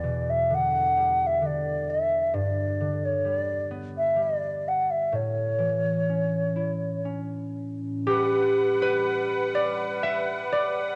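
In a rubato 3/4 at around 60-68 BPM, this tender, nostalgic Celtic slow air opens with a hollow wooden flute singing a pure, tongued melody with vibrato, up front over a fingerpicked, ringing concert harp moving through Em7, G and A. At 7.1 seconds the flute falls silent, and from 8.1 seconds the harp takes a solo on Gmaj7 while a reedy, shimmering musette accordion adds airy sustained chords. The excerpt is tuned to A4 = 444 Hz and has the soft patina of a home cassette recording with light reverb.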